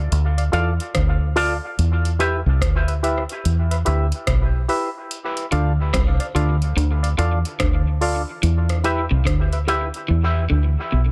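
Spacious and meditative, this dub reggae excerpt at 72 BPM with a swung 16th feel sets a dark, round fingered electric bass up front against a booming analog drum machine with a deep kick, metallic hats and rim clicks, while a hollow, percussive organ stab with chorus and a twangy envelope-filtered guitar drift through an echo-heavy, dry mix over Dm and Em, until a slightly broken-up electric guitar riff with warbly pitch drift enters at 5.5 seconds and the drums drop out at 10.1 seconds, leaving bass and guitar.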